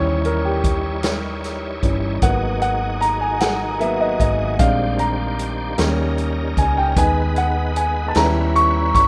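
Fervent and soulful, this short slow-gospel fragment in 6/8 features a natural, up-front grand piano taking a solo throughout, set over a bright, shouting tonewheel organ that holds sustained chords with slow rotary speaker, light overdrive, chorus vibrato and audible key click; beneath them sit a dark, round, punchy hollow-body electric bass and a distant, roomy drum kit of hi-hat, boomy kick and medium-tuned snare that enters at 0.2 seconds, in a rough home demo mix with light reverb and studio ambience.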